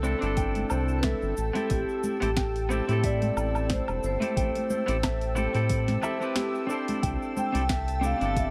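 A round, deep analog bass sits up front in this relaxed, smooth sunset chillout excerpt, its dark, evolving tone anchoring a gently swung groove. Above it, a vibraphone played with soft mallets carries the melody with a metallic, ringing quality and a touch of delay, while a bright, twangy clean electric guitar, compressed and picked, provides accompaniment alongside it. A lush, detuned unison pad holds sustained chords colored by chorus and phaser, moving from C6 to Am7 at 1.4 seconds and back to C6 near the end. The rhythm comes from an overdriven electronic kit with a sharp snare, warm hats, cabasa and woodblock, joined by a soft kick from 0.4 seconds and thin-skinned congas in the background, while a mellow, fingered second guitar plays quiet arpeggios. At 7.2 seconds a glassy texture of drifting overtones enters faintly, all set in a light reverb.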